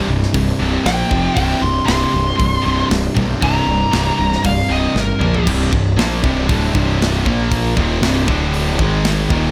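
Epic and dark, this heavy metal excerpt in C minor moves at 117 BPM in a straight 4/4, built on a bright, high-gain guitar riff backed by two sludgy overdriven guitars in the background, one of them double-tracked. Beneath them sit a punchy, fuzz-laden picked bass up front and a tight studio drum kit with a rolled-off top. A distorted, high-gain lead guitar solo runs from 0.9 to 5.5 seconds and ends on a drum fill, after which the riff moves through Cm, D5 and Ab5, while a very quiet, swirling sawtooth pad with phaser and chorus holds sustained chords in a dry mix with little reverb.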